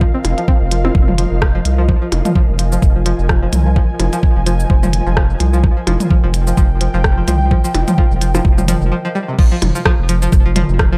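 A knocking electronic kick drives this hypnotic, quirky minimal techno cut at 128 BPM in 4/4, with a 56% swing on the sixteenths and everything sitting on an F minor chord. Up front beside the kick, a round, deep analog bass pumps with the sidechain, while a clicky drum kit of hi-hat, rim click, cabasa and crash cymbal joins at 0.2 seconds, trailed by tape echo. Overdriven electronic blips and toms sit further back, sounding as if re-recorded in a large room. A twangy, string-like resonator pluck carries the riff through chorus and analog delay, its filter sweeping through a short break at 8.9 seconds. Above it all an ethereal, detuned pad breathes with ensemble chorus and its own reverb, pumping with the sidechain, before the drop lands at 9.4 seconds in this echo-heavy excerpt from a longer piece.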